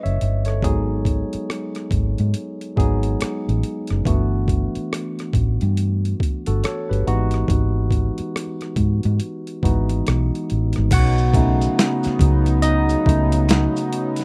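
R&B and neo-soul groove with a sultry, soulful mood, built on a barky, lightly overdriven tine electric piano, a dark, round fingered electric bass and a gritty, pitched-down boom bap sampler-style drum kit with a thumpy kick, all three up front in a dry, rough home-demo mix, until at 10.9 seconds the electric piano takes a solo as a shimmering, chorused pulse-width pad and background maracas with finger snaps join, in this excerpt cut from a longer piece.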